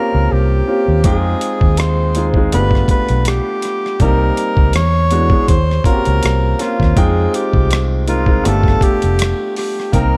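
Lightly swung sixteenths under a gritty, pitched-down boom bap kit with a thumpy kick and rim click, entering at 1.0 seconds, set a smooth, sultry neo-soul R&B groove, where a round, foam-muted electric bass sits up front, a clear concert grand piano rings with long sustain through lush extended chords, and a breathy, whispered tenor saxophone carries an intimate jazz-style melody with scooped notes and light vibrato, all in light reverb with studio ambience in this short excerpt cut from a longer piece.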